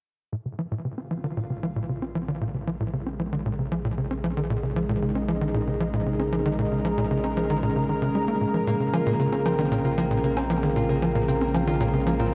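Ambient, sequencer-driven space music in Bb minor at 115 BPM in a straight 4/4, this excerpt from a longer piece feels mysterious and expansive, opening on a Bbm7 chord. A tight, punchy sequencer bass drives a sawtooth-and-square riff from 0.3 seconds, its plucky filtered notes decaying quickly through lush chorus and tape echo while a filter sweep moves across it. Beneath it, a deep, round sine sub bass holds a mellow Bb1 as it fades in over the opening section. From 1.1 seconds a thick, warbling unison pad of detuned sawtooth and square waves sustains vintage, full-bodied chords with a slow attack and long release, bathed in chorus and shimmer reverb. At 8.7 seconds the music moves into a new section as an acoustic concert harp adds ringing fingerpicked arpeggios with tape echo and shimmer, joined by a faint, tape-warm analog shaker and woodblock. A huge ambient reverb with a long seven-second tail surrounds the whole mix.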